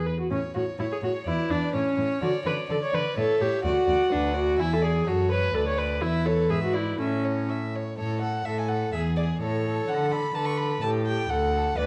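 A viola with a smooth, reedy gut-string tone, a close, up-front cello and a nasal second violin in period style all sound from the very start, carrying the accompaniment, bass and second line, before the first violin enters with the melody at 0.8 seconds, its light vibrato lending the line a graceful sheen. This spirited classical-period string quartet movement runs at a quick 126 BPM in 2/4 in A major, moving through its harmonies in a brief fragment cut from a longer piece. A moderate recital-hall reverb and a dark, warm production surround the four bowed players.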